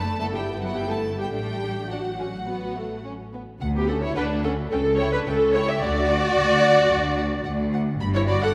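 With a flexible rubato pulse in 4/4 at 109 BPM, this graceful, cheerful excerpt from a quick classical-period movement for string orchestra in D major sets a smooth, vibrato-rich violin melody high above a second, expressive violin line. Up-front, lush violas with expressive portamento enter at 0.2 s, while rich cellos and a dark double bass section anchor the bowed ensemble, all bathed in the wet reverb of a scoring stage as harmonies move from Em/G through a C#dim to close on G5 at 8.0 s.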